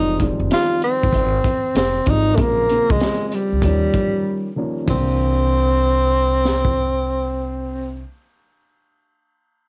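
A home cassette recording with light reverb carries this cool, nocturnal jazz-hop excerpt, swung in 4/4 over a Fm7, Bbm7, Eb7 progression that turns to C7 at 4.9 seconds. Up front, a close-miked, breathy tenor saxophone leads the melody in subtone with light vibrato, while a thumpy, woody pizzicato upright bass with gut strings and transformer saturation anchors the low end. A mellow, boxy baby grand piano with short sustain sits in the background, and a gritty, tape-saturated breakbeat kit with a punchy kick, high-tuned snare, dark cymbals and a rolled-off top plays from 0.2 to 6.7 seconds, with a brief break in the music from 4.3 to 4.9 seconds.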